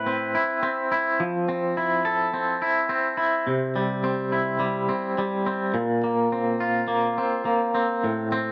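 A light reverb surrounds this brief, mysterious rock passage at 105 BPM in straight 4/4, carried entirely by one clean, twangy electric guitar placed up front and played with the fingers. Compressed and shimmering with tremolo, it ranges from A2 to B4 over a dark progression of Amadd9, Fmaj7, C and Bbsus2. The 8.5-second clip is cut from a longer piece.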